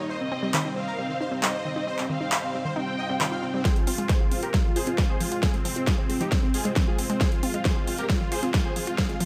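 A driving 4/4 pulse at 135 BPM runs straight through this soaring uplifting trance excerpt in F minor, cut from a longer piece, with a big-room dance drum kit entering at 0.5 seconds carrying handclaps, a huge snare and metallic hi-hats that pump against the sidechain. A thick, detuned supersaw carries the melody from the start, compressed and sustained with vibrato, a sub octave and tape echo, while a lush unison pluck sits in the background playing arpeggios with punchy, wave-folded attacks. A dark studio violin section adds a bowed second line with portamento and dub echo, moving expressively over a Cm chord until 3.6 seconds, while a very quiet electronic swell rises from 3.0 seconds. The harmony then shifts to Fm as a punchy, up-front electronic kick arrives and a build-up begins, with a drum fill and filter sweeps on both the supersaw and the arpeggio sound. The mix sits in light reverb and digital ambience, the pumping sidechain giving the synths a breathing, surging motion.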